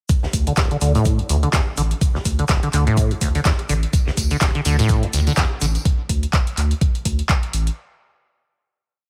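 A four-on-the-floor kick drives this short, raw acid house piece at 125 BPM in 4/4, with a swung sixteenth-note feel; the overdriven, thumpy electronic kick sits up front with a touch of small room reverb. Around it, a dry, booming analog drum machine programs metallic closed and half-open hats and a clap backbeat, while a vintage drum kit loops an edited breakbeat of hats, shaker and medium-tuned snare in the background, its rolled-off top pumping under sidechain. The squelchy, resonant sawtooth acid bass plays a bright 16-step line with accents and slides, tube-saturated with subtle chorus and tape echo, as a filter sweep runs across it until about 5.9 seconds. Beneath it, a deep, thick sine sub bass holds saturated off-beat notes that pump with the sidechain. A jingly, band-limited tambourine adds hand-played sixteenths between 3.9 and 5.8 seconds, and the driving groove rests on a D chord in a fairly dry, forward mix.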